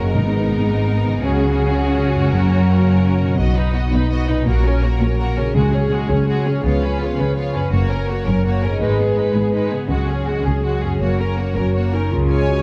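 Rolling in a 12/8 metre with a straight feel, this soaring, triumphant cinematic build-up is cut from a longer piece: smooth, distant violins carry the melody over a lush second violin line, intense violas and a ringing, thumb-plucked harp arpeggiating in the background. Dark French horns hold sustained chords behind them, focused cellos and expressive, up-front double basses anchor the bass, and very quiet timpani struck with hard mallets mark 0.1 s and 5.5 s before a mellow solo clarinet slips in with a second line at 11.6 s. The bowed sections all sing with vibrato inside a wet scoring-stage reverb, and the production is dark and warm.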